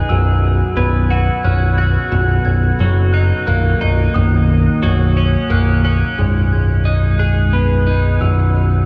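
A chorused twelve-string electric guitar sits up front in this short rock excerpt, its bright, twangy, compressed arpeggios ringing through diffuse ambient delay at a slow 59 BPM in 6/8. Behind it, a glockenspiel struck with rubber mallets adds soft, bell-like arpeggios high in its register, mellow and also trailed by delay. A modern picked electric bass anchors the low end from 0.1 seconds with a punchy, direct tone that stays prominent in the mix. The chords circle over a B in the bass, moving from F#7sus4/B through Bmaj7 and D#m7/B to G#m7/B as a new section arrives at 6.2 seconds, then back to F#7sus4/B. The whole mix is dreamy and soaked in a huge ambient reverb, giving the piece a cinematic, euphoric glow.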